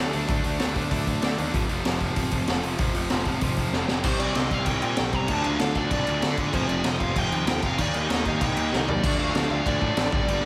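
A straight 4/4 pulse at 192 BPM drives this angry, raw punk rock excerpt. A raw garage drum kit sits up front, its high-tuned snare, boomy kick, hi-hat, crash cymbal and toms sounding gritty and saturated with a rolled-off top, and drum fills lead into each new section. Beneath it, a fuzz picked electric bass growls with overdrive, while a crunchy overdriven guitar and a tight distorted guitar play bright riffs from the background, both carrying slapback echo over D5 and F5 chords. At 4.0 seconds a dark, smooth lead guitar enters with an overdriven melody from C5 to Bb5, also treated with slapback echo, and a very quiet double-tracked overdriven electric guitar adds another riff as the harmony moves through Cm, Dm, F and Eb before landing on Dm at 9.0 seconds. Lush hall reverb and small room ambience give the mix a big arena sound.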